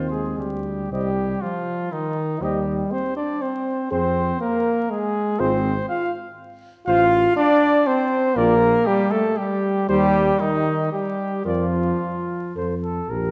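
A close-miked, up-front trombone carries a warm voice in this noble, stately brass quintet passage, cut from a longer classical piece in C minor, moving at 120 BPM in 3/4 with a rubato feel. Above it, a dusky trumpet with vibrato, a soft attack and a smooth top sings the melody, while a warm second trumpet adds its own line. A mellow French horn with light vibrato and a soft attack sits in the background as accompaniment, and a somber tuba anchors the bass. The harmony moves from C minor through F minor to F major, pauses on an unharmonized moment, then passes through a rootless C minor and a bare Bb fifth before settling on F. The second trumpet and trombone stop at 12.5 seconds, leaving the other three to finish at 13.3 seconds, all bathed in a wet scoring-stage reverb with a layer of vinyl crackle.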